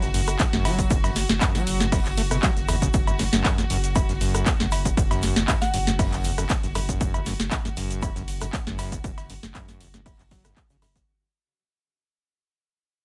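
This trippy acid house drop at 118 BPM with a light 16th-note swing opens with a booming, dry analog drum machine with tonal snare, metallic hats, cowbell, handclaps, rim click and shaker, a very quiet loose indie kit in a small room, a squelchy, resonant acid bass riff with tube saturation and tape echo, a deep, thick sub bass and a distant, biting string section holding sustained chords, both pumping. An overdriven, punchy electronic kick enters at 0.4 seconds to drive it all, while a glassy FM synth bell flickers briefly at 5.6 seconds just as the fade-out begins at 5.7 seconds.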